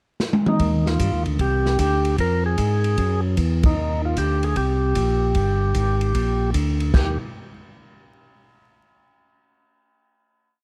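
A swung 4/4 groove opens with a drum fill at 0.2 seconds, and then a big-band kit drives the time with a stick-played ride cymbal pattern, dark cymbals, a medium-tuned snare and a tight kick. This is a short, soulful soul jazz organ trio piece. A clean, percussive tonewheel organ with key click and slow rotary speaker states a motif-based melody in period phrases, while a thick, lightly overdriven organ lays down a walking bass line, also through slow rotary. The dark, dry production with vinyl crackle frames a band accent at 3.6 seconds before the trio settles on a final chord at 6.9 seconds.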